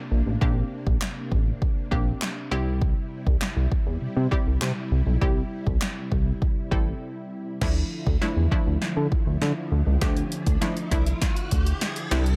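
With little reverb, this energetic, confident dance-pop excerpt at 100 BPM in D minor sets an up-front, overdriven deep house drum kit with a deep kick and punchy snare against a glossy, dark chorused synth bass, while a round, bright analog pluck and mellow, vintage string-machine violas pump under sidechain with the bass; a brief break at 7.0 seconds gives way to a drum-fill build-up from 7.6 seconds, and an electronic riser enters at 9.2 seconds.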